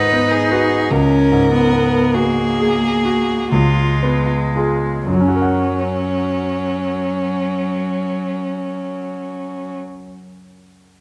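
Lyrical and tender, this slow romantic movement for piano trio unfolds in 3/4 at 37 to 51 BPM with a rubato feel in F# major, and it is a passage cut from a longer piece. A single violin carries the melody with a focused, vibrato-laden tone, while one cello sings a smooth, even second line beneath it, both bowed and rich. The concert grand piano supplies the accompaniment with a clear, polished sound, deep bass and short sustain, and sits slightly ahead of the strings in level. The opening moves from G#m7 through C#7sus4 and C#7, slowing down until the harmony arrives on F# at 5.1 seconds, where a new section begins. The strings fall away at 9.8 seconds, leaving the piano alone until 11.0 seconds. Close, detailed microphones keep every part up front, set within a reverberant recital hall.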